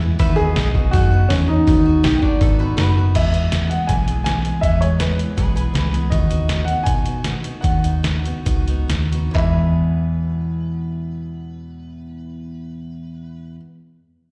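Nostalgic and down-home, this honky-tonk and classic country excerpt in E major runs at 129-162 BPM and slows down in its middle stretch, with a woody upright piano carrying the melody through slapback echo over a full-bodied picked dreadnought acoustic guitar, a dark, foam-muted electric bass up front, and a gritty, pitched-down sampler-style drum kit with thumpy kick, handclaps and crash cymbal that drops out at 9.5 seconds, while a bright, twangy pedal steel with lush chorus sustains chords in the background only for the opening 3.1 seconds and a metallic, nasal lap resonator slide guitar adds brief second-line phrases before returning from 9.3 seconds to the end, the whole performance heard as a live gig through the venue's PA in a recital hall.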